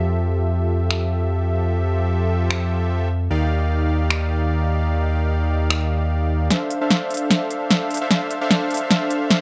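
A big, bright polysynth carries the riff throughout this lush, bittersweet future bass passage at 150 BPM in D minor, its fat, detuned sawtooth tone wave-folded and evolving under a touch of delay, while a deep, thick sine sub bass with saturation holds the low end until 6.5 seconds. A punchy, overdriven big-room dance kit of finger snaps, crisp hats and snare enters at 0.9 seconds with a half-time, lightly swung feel, as the harmony moves through Fmaj7 and Ebmaj7. From 6.5 seconds, over Dm7, the track shifts into a build-up with a drum fill and a filter sweep on the polysynth, all set in light digital reverb and cut from a longer piece.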